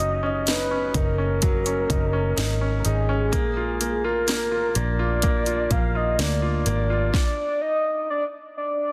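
A soft, detuned synth lead with chorus and vibrato opens this heartbroken 63 BPM pop ballad excerpt over brilliant grand piano, a dark, foam-muted vintage electric bass and a punchy, layered electronic house kit with cracking snare, moving from Gb6 to Bb at 3.3 seconds before the band drops out between 7.1 and 7.4 seconds and leaves the round, sustained lead alone in light digital reverb until 8.9 seconds.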